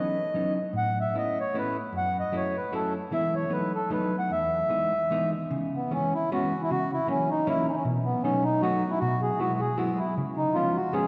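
A lush church acoustic with a long, wet reverb surrounds this short cut from a longer musette waltz, whirling and nostalgic in mood, with a lilting swung three-beat feel that bends freely in rubato. Up front, a close-miked accordion carries the melody with a reedy, round and mellow single-reed tone, full-bodied and dry at the source. Beneath it, a clean, dark hollow-body electric jazz guitar, played with the fingers, supplies the accompaniment in a lower register, also placed up front. Both parts play together from start to finish, moving through colorful chords such as Badd9, F#m7 and Emaj7. At 5.5 s the harmony shifts into a second section built on C#m7, F#7/C# and B7 before closing on C#7, deepening the wistful, old-world charm.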